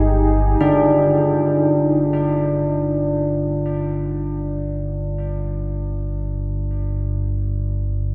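Drenched in a vast, echoing cathedral reverb, this unsettling and desolate dark ambient drone drifts in free time. A moody, detuned sawtooth pad with chorus opens on an Ebadd11/G chord for only the first 0.6 seconds, as an ominous, rumbling low drone sits up front and fades in through to 8.1 seconds under a G5. From 0.6 to 6.7 seconds, clangorous bronze church bells with a worn iron clapper ring out arpeggios on D4 through tape echo, their beating overtones giving this short fragment of a longer piece its haunted edge.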